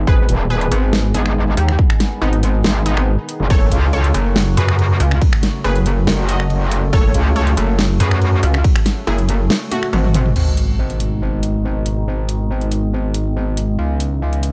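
A pair of metallic wobble basses dominates this menacing, chaotic stretch of heavy wobble dubstep, both sitting up front with FM grit and chorus, one saturated and overdriven, the other distorted and bright. Beneath a half-time feel, a punchy, tape-warm electronic kick hits hard until 8.7 seconds, while a layered dubstep kit with a huge snare, metallic hats, crash, ride, finger snaps and toms drives the whole passage and rolls into a drum fill just before the drop gives way. A bright, lush unison pluck with a ring-modulated edge and a filter sweep carries the melody through a delay until about 10.3 seconds. Behind it all, an evolving wavetable pad morphs and warbles in the background, dark and detuned, with phaser, reverb and sidechain pumping. At 10.4 seconds a sub drop lands as an impact, and the harmony moves from G#m through F#m back to G#m and on to C#m over a dark, digital ambience in this section cut from a longer track.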